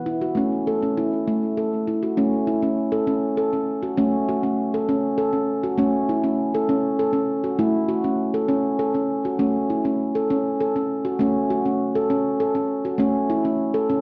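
A solo handpan rings out up front, its nitrided steel struck with the fingertips for a warm, vintage, band-limited tone that sits between E3 and A4 under a diffuse ambient delay. This dreamy, gentle piece of world meditative music moves at 66 BPM in a straight 6/8, in A major pentatonic, drifting between A and F#m/A chords as a short opening phrase gives way at 2.2 seconds to a longer passage. A wet reverb, like a scoring stage, surrounds the instrument with a 1.9-second tail through this brief cut from a longer work.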